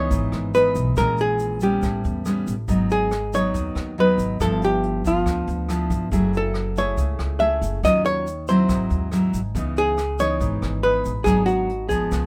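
Lightly reverberant, this melancholic, wistful bossa nova excerpt in C# minor at 140 BPM sets a dark, clean, hollow-body archtop guitar melody up front over fingerpicked, deep-toned nylon-string guitar chords, woody pizzicato upright bass, a brushed drum kit with a boomy kick, hi-hat and rim click, and a grainy egg shaker tucked in the background, moving through jazzy harmony from C#m9 through G6 and F#m9 to a closing G#m7b5.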